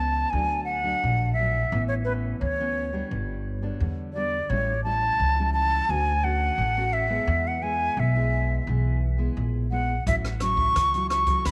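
Lively and playful, this short samba and choro passage in A major moves at a straight 86 BPM, with an airy silver concert flute carrying the tongued, vibrato-laced, slightly unsteady melody up front through a tape echo. Underneath, a full-bodied nylon-string guitar fingerpicks a deep classical accompaniment, and a dark, woody pizzicato upright bass holds the low end through changes that begin on D and settle on A6. An acoustic jazz kit with a boomy kick joins only at 10.1 seconds with hi-hat and rim click, all set in a light reverb.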